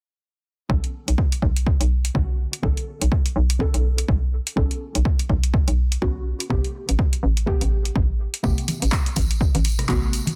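A swung 124 BPM deep house groove in 4/4 rides on a punchy, tape-warm electronic kick up front and an analog drum machine's handclaps, hi-hat and rim click, with a hollow, bouncy FM bass knocking under a filter sweep while muted, detuned dub chord stabs pulse through phaser, sidechain pumping and tape echo over Bm9 moving to Am9 at 6.5 seconds. The mood is warm and moody, the sound dry, dense and heavily limited, and this excerpt of a longer piece adds a jingly tambourine in the background at 8.4 seconds and small-room congas at 8.7 seconds.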